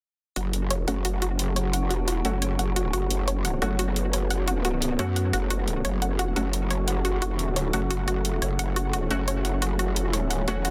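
This dark, technical drum and bass track at 175 BPM in F# minor opens on an F#m chord with a punchy, detuned sawtooth pluck playing arpeggios through digital delay and a filter sweep, alongside an up-front, growling, wobbling bass with chorus and tube saturation and bright, overdriven electronic hi-hats. Bold orchestra-hit-like synth stabs with ring modulation, reverb, delay and their own filter sweep sit in the background from 0.9 seconds, followed by a metallic, inharmonic FM drone holding eerie sustained chords from 1.3 seconds and a very quiet, ethereal airy pad from 2.0 seconds. The tense, mechanical mood is sealed by a dense, heavily limited modern master with little reverb.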